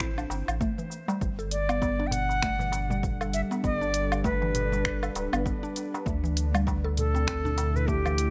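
Mystical and hypnotic, this organic downtempo excerpt at 99 BPM with a loose sixteenth-note swing pairs a woody, chorused mallet-like synth pluck arpeggio and a round sub bass pumping under the sidechain with an overdriven deep house kit of finger snaps, hi-hat, shaker and woodblock, a punchy electronic kick and a crisp, dry darbuka in the background, before a detuned sawtooth pad with 12-bit sampler grit arrives at 1.2 seconds and an airy, bright cedar flute with vibrato and delay takes the melody up front from 1.5 seconds over chords moving from A7(no3) to G and Dsus2 in light reverb.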